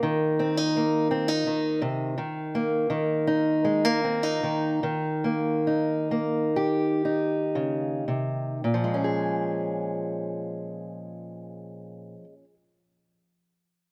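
The first sound is a lone fingerpicked acoustic guitar, an old ladder-braced instrument with a dark tone, sitting up front on close, detailed microphones. This brief folk piece, cut from a longer work, moves in a free rubato 4/4 that drifts between 54 and 85 BPM, centred in Bb dorian. The mood is intimate and melancholic, and the tempo slows from 1.8 to 8.6 seconds as the harmony passes through Cm7 and Eb. At 8.6 seconds a new passage opens on Bbm7, and the guitar plays on until 12.5 seconds across a range from Bb2 to Ab4. Finger squeaks on the strings add to the closeness, while a light reverb gives the sound a little air.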